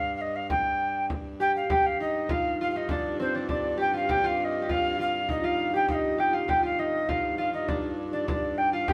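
This cut from a longer medieval dance opens on a mellow tenor recorder carrying the melody between C5 and G5, over a rich, bowed viola da gamba holding a low G2 drone. The recorder sits up front yet sounds distant, its pure wooden tone marked by vibrato and a tongued chiff, while the single fretted gamba is close and intimate, with an airy bow, soft attack and light vibrato beneath the tune. A deep, large frame drum enters at 0.5 seconds, struck with hard hands and heard close and dry. At 1.4 seconds a bright, fingerpicked concert harp joins up front with a ringing second line between C4 and G4. Moving in a straight 2/4 at 100 BPM and tuned to A4 = 441 Hz, the music feels mysterious and driving. The band plays live together in a wet stone room with a reverb of about 1.1 seconds.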